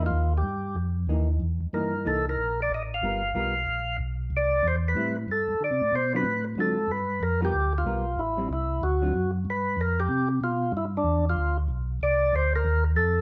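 Recorded live in a stone room with moderate reverb, this greasy, soulful swing jazz fragment features a percussive tonewheel organ carrying the melody with key click and a slow rotary speaker, a dark, round organ bass with chorus vibrato, and a clean, picked hollow-body electric guitar comping over the chord changes until 9.1 seconds.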